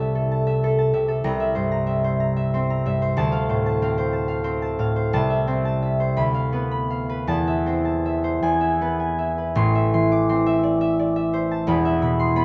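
A solo concert harp opens this dreamy, serene classical fragment, its fingerpicked, ringing tone sitting up front in light reverb as it moves through A minor at a slow, rubato 6/8 pulse of about 51-65 BPM. The harp spans the low E1 up to D6, drifting through C7, Dm7 and a diminished chord before settling on E at 8.4 seconds. A new passage begins on A minor at 9.6 seconds and closes on a bare E5 from 11.7 seconds until this cut from a longer piece ends at 12.4 seconds.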